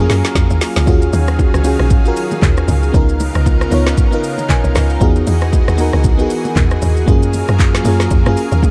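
Dark, warm and nearly reverb-free, this short cut from a longer amapiano piece has a deep, soulful mood and a swung sixteenth-note feel. A woody, punchy log drum bass sits low and prominent, its FM tone carrying a noise layer with a fast attack and decaying notes. A deep house kit sits up front, electronic and layered, with a deep kick, smooth hats, rim clicks, claps, shaker, snare and toms, and it opens with a drum fill before soft-handed acoustic congas and bongos enter very quietly and dry at 0.9 s. An FM electric piano with a dreamy, detuned, chorused tone and a soft pad layer carries the accompaniment, adding a fill between 4.0 and 5.0 seconds. Behind it, a thick, bright unison pad of detuned sawtooth and square waves holds sustained chords with a slow attack, long release and sidechain pumping, moving from Gbmaj9 through Ebm11, Db13 and Emaj9 before returning to Gbmaj9.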